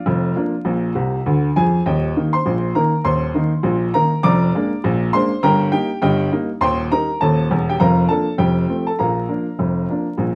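A dark production with vinyl crackle and moderate studio reverb frames this short ragtime piano excerpt, cut from a longer piece, jaunty and playful at 101 BPM in 2/4 with a swung sixteenth-note feel. A solo upright piano sits up front with a clear, woody, boxy tone and short sustain, ranging from the deep bass to the high treble and adding a brief fill at 1.0 seconds. The harmony starts in Eb major and moves into Bb major from 6.6 seconds, closing on a cadence back to Bb.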